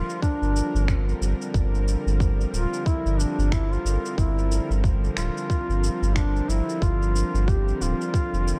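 This organic downtempo passage, cut from a longer piece, feels earthy and mystical, with a relaxed swung lilt over a single sustained minor-seventh harmony. A mellow, folk-style duduk carries the solo melody in a narrow middle range, its soft attack, vibrato and scooped notes trailed by delay. Beneath it, a tense, string-like bowed drone holds sustained chords, built from sawtooth and triangle layers with a noise layer, ring modulation and vibrato, fading in slowly and lingering in its own reverb while sidechain pumping makes it breathe. A deep, round sine sub bass sits up front with a fast attack and long held notes, joined from 0.2 seconds by a tight, tape-toned electronic kick drum. A quieter electronic shaker and finger snaps, entering at 0.1 seconds, add small-room ambience to the groove, and the whole production is dark and warm with light reverb.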